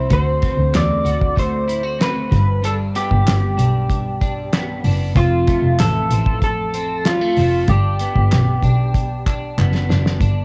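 A cassette home recording in a small room gives this laid-back, nostalgic bedroom-pop excerpt a hazy, intimate sound at 95 BPM in G major, drifting through D7, G, Fmaj7 and Gmaj7. A compressed, up-front guitar through a small old amp carries the picked melody with chorus, tape and delay, while a second guitar at the edge of break-up picks an accompaniment with a warbly pitch drift, and a dark double bass is bowed sul tasto with an airy tone and light vibrato. A cloth-damped, thuddy kit with a fat snare, tight kick and rolled-off top is joined at 0.7 seconds by crisp, band-limited group handclaps in the background, and the drums play a fill at 9.6 seconds.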